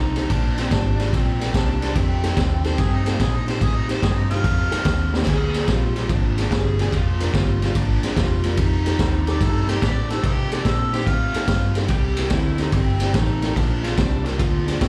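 A rollicking, gritty electric blues shuffle at 145 BPM opens with an overdriven, picked lead guitar with slapback echo carrying the melody over a slightly broken-up, lo-fi guitar riff in the background and a round, foam-muted vintage bass, joined almost at once by a saturated garage drum kit up front with a boomy kick and high-tuned snare and by a woody, boxy upright piano with audible action noise quietly comping behind, while a distant harmonica with overdrive, light vibrato, tongue slaps and scooped notes enters at 2.7 s and returns at 9.3 s, a drum fill lands at 5.1 s, and the whole band sounds like a live club gig through the venue's PA.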